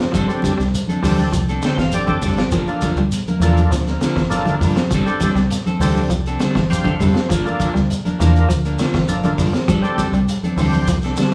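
A straight 4/4 afrobeat groove at 100 BPM drives this defiant, hypnotic excerpt, where a crunchy, saturated breakbeat kit with a punchy kick and high-tuned snare, grainy shekere, ringing congas in the background and a round, foam-muted dub bass underpin a bright picked clean guitar playing arpeggios and a twangy, slightly broken-up guitar playing stabs, both with a warbly pitch drift, while a thick, overdriven tonewheel organ with key click, slow rotary speaker and chorus vibrato adds fills at 1.3 and 6.4 seconds over chords alternating between F69/G and Gm7, all set in a small stone room with a live-band feel.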